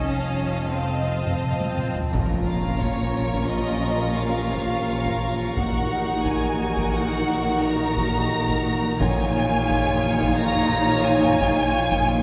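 Bowed strings, glassy glass harmonica chords, a close taiko ensemble and a metallic, inharmonic drone with chorus and its own reverb open this eerie, tense cinematic suspense cue in Bb minor, moving at 87 BPM in 5/4, with a focused violin melody over a second violin line, a viola accompaniment with portamento, and cello and distant double bass sections holding the bass. An electronic swell begins at 1.0 seconds, a drum fill leads to an impact at 2.1 seconds, and there a very quiet French horn section enters with dark sustained chords, timpani strikes join, and a high violin texture hovers in the background until 8.6 seconds. The whole ensemble sits in a reverberant concert hall, and the harmony moves from F7 to Bbm, Ebm/Bb and finally Dbadd9/Bb, in what is cut from a longer piece.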